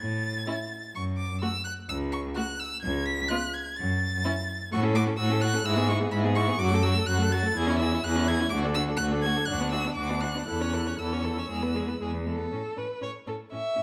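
Graceful and lively, this quick classical-period movement for string quartet moves at 126 BPM in A major with a rubato feel, its harmony leaning on F#m before settling through D, Bm/D and A/E toward E and a resolving A at 12.5 seconds, in a clip cut from a longer piece. A soft-attacked, expressive first violin carries the melody high up front with vibrato and portamento, while the clear, even cello holds the bass from the start and a rich, focused second violin and an expressive viola with gliding portamento join at 0.5 seconds. A moderate recital hall reverb surrounds the four bowed players.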